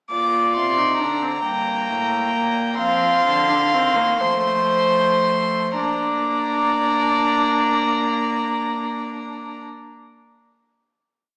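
A nasal, airy-bowed violin sits close and up front with the melody of this short, stately baroque-style fugue for string quartet. Alongside it from the outset play a dark, smooth-topped second violin with light vibrato, a reedy viola and a distant cello, each a single gut-string, period-style player carrying one line of imitative counterpoint. In an elegant 6/8, the music slows from the start through 7.4 seconds as the exposition gives way at 5.8 seconds to a final chord, all wrapped in a wet church-like reverb with a small-speaker quality.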